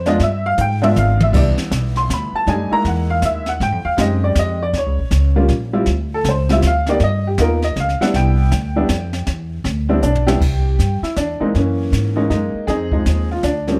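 A lilting jazz waltz swings its eighths at 159 BPM in 3/4, setting a playful, warm mood for this piano trio fragment cut from a longer piece. An upright piano, woody, slightly detuned and boxy, sits up front with plate reverb and carries the melody, taking a solo from the start until 10.4 seconds. Pizzicato upright bass with steel strings gives a dark, up-front low end, while a brushed drum kit recorded in a studio room, with a high-tuned snare, boomy kick, hi-hat, toms and crash cymbal, adds airy, polished colour, with fills at 0.6 and 10.0 seconds. The harmony moves through rich extended chords such as G7b9, Cmaj9, F#13, Fm7 and G7alt before a new section begins on a plain C at 10.4 seconds. A light reverb wraps the whole trio.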